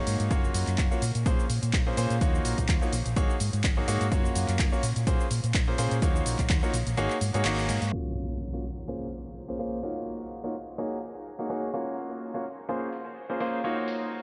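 Bittersweet and soulful, this piano house passage at 126 BPM in Bb minor is built on a bright, brilliant concert grand piano riff with short sustain, tape echo and sidechain pumping, alongside a dark, round fingered electric bass with tube saturation and the same pumping. A punchy, overdriven analog drum machine adds swung cabasa, handclaps and filtered hi-hat over an overdriven electronic kick. The kick drops out at 6.6 seconds and the bass at 7.9 seconds, where an up-front electronic impact lands and a filter sweep runs to the end over a cycling Gbmaj7, Bbm9, Ebm9, Ab9sus4 progression, all soaked in a huge ambient reverb that gives the soft-topped mix its dreamy haze.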